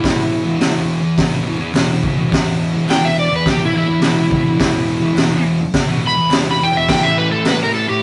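A swaggering, raw garage rock excerpt in 4/4, cut from a longer piece, where an overdriven slide guitar carries the melody up front across the full 8.0 seconds over a dark, double-tracked fuzz riff and a gritty, boomy-kicked drum kit with a high-tuned snare, while crisp group handclaps sit barely audible from 0.6 seconds, all in a rough rehearsal-room recording with moderate stone room reverb and a rolled-off top.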